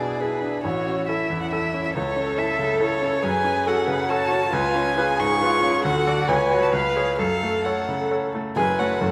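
Urgent and restless, this rubato piano quartet movement in a classical-period style and triple metre sets a rich, up-front violin melody with light vibrato and airy sul tasto bowing over a warm, intimate cello second line, a soft-attacked viola in the background and a bright, brilliant concert grand with deep bass, heard in a wet recital hall beneath vinyl crackle and cut from a longer piece.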